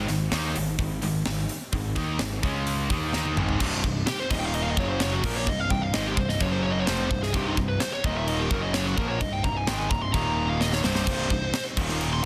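A straight 4/4 pulse at 129 BPM drives this heavy, relentless heavy metal excerpt in C phrygian. A tight, up-front drum kit with bright cymbals, a high-tuned snare and a tight kick backs three picked riffing guitars: two bright distorted ones sit in the background, and a very quiet double-tracked fuzz guitar plays alongside them from the start over a growly, overdriven fuzz bass. After a drum fill, a very quiet, detuned, warbling sawtooth pad enters at 3.6 seconds, and at 4.1 seconds a dark high-gain lead guitar launches into a solo, all within a dense, heavily limited modern master.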